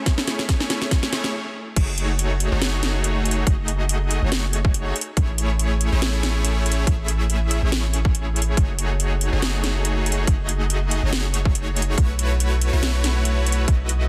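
Dense and heavily limited with light digital ambience, this lush, emotional future bass excerpt at 141 BPM in F# dorian, half-time with a 16th-note swing, opens on a brief build-up with a drum fill and a stop before dropping at 1.8 seconds, where a deep, sine-toned 808-style bass with sidechain pumping joins the hard-clipped, overdriven electronic kick and trap kit of sharp snare, metallic hats and crash, all alongside a fat, detuned, wave-folded sawtooth polysynth riff carrying tape echo and pumping through chords of Amaj7, F#m69 and a closing B9sus4.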